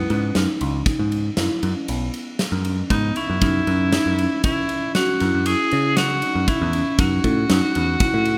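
In a straight-feel 7/4 at 118 BPM, this brooding, intricate progressive instrumental is a short cut from a longer piece, tuned to A4 = 442 Hz. A big acoustic rock drum kit, recorded in a stone room, sits up front with a tight kick, a medium-tuned snare and ride cymbal, while a picked electric bass adds a round, direct, warm low end. A bright tenor saxophone carries the jazz-style solo melody, its vintage tone marked by light vibrato and scooped notes. In the background, a metallic, band-limited vibraphone struck with hard mallets plays a ringing second line with fast motor vibrato, and a woody, mellow marimba played with soft mallets on padauk bars adds arpeggios. The harmony moves from a rootless Eadd9 to Emaj7sus2 at 3.4 seconds and F#m7 at 7.0 seconds, heard through a rough home-demo mix with light reverb.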